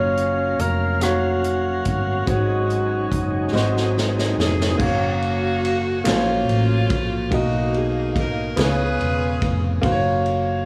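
A slow 6/8 gospel pulse at 48 BPM, counted in dotted quarters and played straight, carries this hopeful, jubilant passage cut from a longer piece. A breathy tenor saxophone with scooped notes and light vibrato sings the opening melody through tape echo. Beneath it sit a clear baby grand piano, its action noise audible, and a gritty tonewheel organ holding sustained chords through a slow rotary speaker and chorus vibrato. A round, dark hollow-body electric bass anchors the low end, while a roomy, distant big-band drum kit with dark cymbals and a boomy kick plays crash, hi-hat, ride, rim click and snare, adding a fill just before the second section. At 4.4 seconds a saxophone section with soft attack carries the melody up front, and quiet, crisp group handclaps join at 6.1 seconds. The harmony moves from Gbmaj7 through Ab7sus4 and Ab7, then returns to Gbmaj7 and passes through Cbmaj7 and Db7 back to Gbmaj7, set in a small studio room with light reverb.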